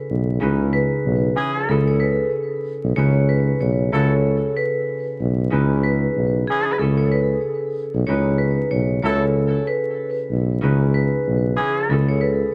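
Vinyl crackle and small-room ambience frame this dark, reflective hip hop excerpt at 94 BPM in C# minor with a swung 16th feel. A fingerpicked concert harp tinted by cassette tape rings up front from the start, while a close-miked, mellow tuba carries the bass with scooped notes and light vibrato. A bright, metallic vibraphone with slow motor vibrato and digital delay takes the melody from 0.7 seconds, and a smooth-topped horn section adds delayed stabs from 1.4 seconds over a cycle of C#m7 and B13sus4 chords.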